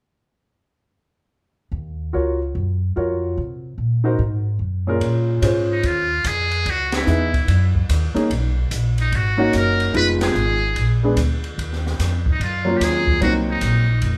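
A swinging 4/4 pulse at 146 BPM carries this late-night small-group jazz cut, lifted from a longer piece, as pizzicato upright bass enters at 1.7 seconds with a woody, growly tone up front, joined moments later by a clear upright piano whose intimate sound carries audible action noise and short sustain. The harmony moves through dark minor colors, opening on Ebm9 and passing through Bbm9, Gb69, Bmaj9 and Bb7b9 before returning to Ebm9. At 5.0 seconds an open acoustic drum kit comes in with dark cymbals, a high-tuned snare and a boomy kick, and shortly after a trumpet with a metal mute takes the melody, its brilliant, buzzy, thin voice carrying light vibrato and sounding distant and roomy despite sitting up front. The full band hits accents together around 6.9 and 10.1 seconds. A moderate large-studio reverb wraps the group, which sounds like a band playing live in one room.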